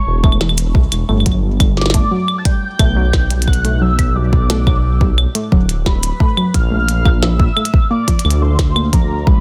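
Glitchy and playful, this short IDM excerpt, cut from a longer piece, moves at 88 BPM in a straight 4/4 and sits in G lydian with a tuning slightly below standard pitch. A warbling, nostalgic lead carries the melody high in its range, its detuned tone softened by ensemble chorus, vibrato and delay. Underneath, a dark detuned saw bass rumbles up front with a deep, beating unison sound, while a dusty, lo-fi pluck spins arpeggios in the middle register through chorus and dub echo. An up-front electronic kick with a deep thump and a glitchy kit of tiny snare, clicky hi-hats, cabasa and claves drive the groove, both touched by studio reverb. The harmony opens on A, settles on Gmaj9 at 1.1 seconds, then shifts to Bbmaj7 at 6.5 seconds, all within a dense, heavily limited modern master that has a dry room sound.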